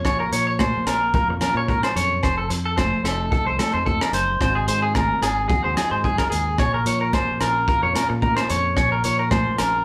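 A twangy, slightly broken-up electric guitar through a small old amp sits up front, picking arpeggios with a lo-fi, compressed edge and a shimmering harmonic tremolo. This is a danceable, warm highlife guitar band groove in Bb minor at 110 BPM, in 4/4 with a light swing on the sixteenths, cut from a longer piece. Beneath it, a mellow, clean electric guitar plays fingered accompaniment in the background, while a round, dark fingered electric bass anchors the low end. A crunchy breakbeat kit of hi-hat, punchy kick and rim click sounds gritty and saturated, with a rolled-off top and a pumping room sound. Ringing agogo bells and bright, high-tuned congas played with soft hands add percussion from further back. The band plays live in one room with a moderate large studio reverb and a faint mains hum, cycling through Bbm, F7 and Ab7 before returning to Bbm at 6.6 seconds.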